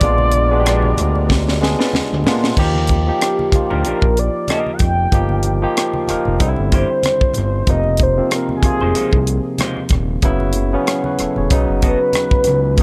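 An echo-heavy, lightly reverberant mix carries this smooth, sensual R&B and neo-soul piece at 94 BPM in Eb major, where a tight, dry funk drum kit with bright cymbals sits up front beside a barky, lightly overdriven tine electric piano, a saturated, detuned synth bass holds the low end, very quiet low-tuned congas add color, a slightly broken-up lo-fi electric guitar plays a second line from 0.7 s, a lush, warbling unison pad sustains chords until 2.5 s, and after a drum fill a round, horn-like synth lead with chorus and tape echo takes a soft solo from 2.6 s.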